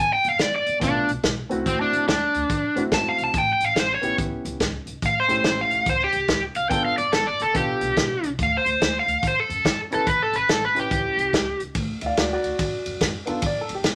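A dark, smooth overdriven lead guitar carries the melody up front in this laid-back, rollicking electric blues shuffle, picking its line until 9.8 seconds. Set at 143 BPM in 4/4 with a swung eighth-note feel, the excerpt is cut from a longer piece and moves through G7, D7 and A7 before landing on D at 11.8 seconds and closing on G5. A bright, overdriven slide guitar, also up front and fingered, adds a second line in two stretches, first entering at 0.8 seconds. A mellow upright piano with a woody tone fills in the accompaniment underneath. An acoustic upright bass, plucked pizzicato on steel strings, gives a thumpy low end, while a natural country drum kit with a punchy kick, medium-tuned snare, hi-hat and ride sits up front in a studio room. Moderate studio reverb gives the whole mix a gentle sense of space.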